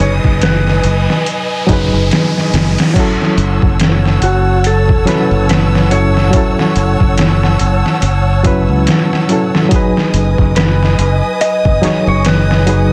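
Trip hop with a dark, smoky mood, this short cut opens on an electronic riser that stops at 3.0 s, set over a muffled, pitched-down sampler kit with a thumpy kick and overdriven 12-bit grit, a growly fingered electric bass up front, a reedy electric piano with tremolo and tape echo, lush bowed violins, and a slightly broken-up slide guitar carrying the melody through its own echo, inside a dense, dry master dusted with vinyl crackle.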